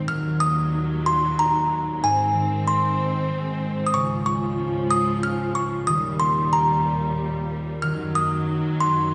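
A gently swaying three-beat rubato carries this innocent, tender children's lullaby, cut from a longer piece. A delicate, slightly out-of-tune music box sings the melody high and up front from 0.1 seconds, over a ringing, thumb-plucked concert harp accompaniment and a lush, bowed string section holding smooth sustained harmonies with vibrato. The chords move from Ebm through Ab, Db and Eb back to Ebm, and the whole recording sits in a wet concert hall reverb with a soft, rolled-off top end.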